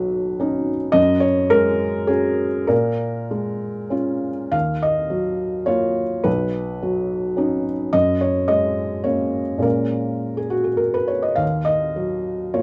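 Neoclassical minimalist piano in Eb minor, wistful and reflective, moving at 105 BPM in a rubato 3/4 through a cycle of Badd9, Gbadd9, Bbm7 and Ebmadd9 that runs through twice in this short excerpt from a longer piece. A felt-muted upright piano plays alone from B1 to F5, its tone soft, mellow and intimate, sitting up front in the mix. Moderate studio ambience with a live-room feel gives the close, natural sound a little air.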